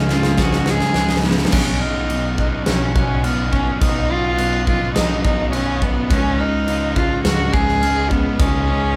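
Cinematic and hopeful, this post-rock excerpt at 105 BPM in B lydian opens with a drum fill building up over a bright crunchy guitar riff that stops at 1.5 s, as a punchy, up-front arena kit drives a dark sludgy guitar riff and growling overdriven bass beneath a veiled, con sordino cello melody, while glockenspiel and mellow electric guitar arpeggios and a very quiet ethereal pad drift through chords moving from C#sus2 to Badd9 and back in a live room with light reverb.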